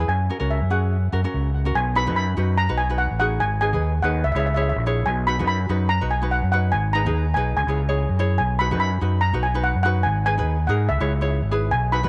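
A shimmering steel pan played with hard rubber sticks carries the carefree, sunny melody up front with tape echo, over a light fingerpicked ukulele and a growly, overdriven fingered electric bass in this lightly swung calypso excerpt at 144 BPM in B major, moving through chords like B6, G#m and C#m in a small, lightly reverberant room.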